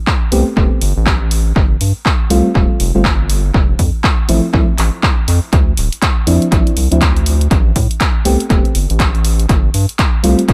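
A punchy electronic kick and an analog drum machine playing handclaps and hi-hat through tape echo open this moody, deep house excerpt at 121 BPM with a 16th-note swing. From 0.3 s a round, wave-folded analog bass sits up front beside a mellow, warbling FM electric piano playing dark, chorused stabs through a low-pass filter and tape echo, both pumping against the kick. The piano's chords move from Am9 through G9sus4, Fmaj7 and Dm9 to Am7 and back to G9sus4, in a lightly reverberant, echo-heavy mix.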